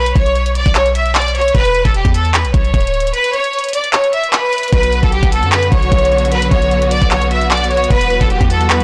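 A bright, vibrato-laden violin section carries an intense melody over a deep, boomy 808-style bass from the opening, with a trap kit of knocking kick, bright hi-hats and handclaps arriving at 0.1 seconds. This menacing, melancholic hip hop cut in B minor moves at 151 BPM with a half-time feel. The kick drops out from 3.1 to 4.7 seconds, and at 4.7 seconds a lush symphonic string section enters with smooth, focused sustained chords. The whole excerpt sits in a small room with a blown-out, overdriven sound.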